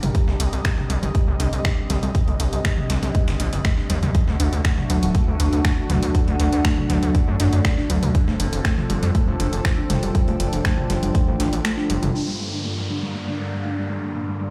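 A lush, airy unison pad sustains chords in G minor from the opening, together with a soft, round pluck tracing arpeggios under a filter sweep, a very quiet drone with moving overtones, and a warbling, lo-fi tape-like pad, all set in melodic techno at 120 BPM with a melancholic, dark mood. Underneath, a gritty, saturated synth bass sits up front with sidechain pumping, while a punchy electronic kick drives the straight 4/4 groove alongside an overdriven analog drum machine of finger snaps, hi-hat and toms and a compressed, sampler-style breakbeat kit of filtered hats and snare in the background. The harmony moves through Cm, D and F before landing on Gm, and the kick drops out briefly just before the change. At 12.1 seconds the bass and drum machine stop, and a fat, mellow analog lead with vibrato, cassette tape colour and tape echo takes the melody under its own filter sweep while a downlifter enters. 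Light reverb and a stone-room ambience give the whole cut from a longer piece the feel of a big sound system in a bare room.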